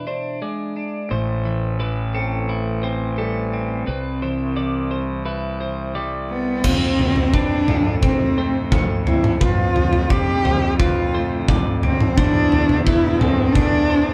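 A dark, bowed cello sings an expressive melody with vibrato and portamento from 6.3 s, soaring over two clean, twangy twelve-string electric guitars picking compressed arpeggios (the lower one bathed in spring reverb), a growly fuzz bass entering at 1.1 s, and a big acoustic rock kit with punchy kick, toms and bright crash arriving at 6.6 s, in a euphoric post-rock passage at 87 BPM, cut from a longer piece and played live in one room.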